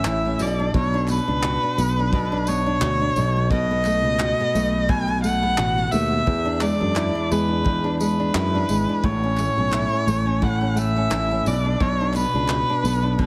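Sunny and easy-going, this acoustic pop excerpt moves at 87 BPM in 4/4 with a gentle sixteenth-note swing. An up-front erhu carries the melody with one bowed voice, its soft attack, vibrato and portamento giving an expressive, singing line. Beneath it, a fingerpicked nylon-string guitar plays classical-style accompaniment through a progression of Bm, B7, E7 and A before returning to Bm at 11.5 seconds, while a sustaining fretless electric bass adds a growly, direct low end from 0.1 seconds. A soft brush drum kit sits distant and roomy, with a punchy kick, tambourine, handclaps and a rolled-off top, and a crisp, dry group handclap, barely audible, runs from 0.1 to 12.7 seconds. Light reverb surrounds the parts, and heavy multiband compression gives the whole a squeezed, radio-like sound.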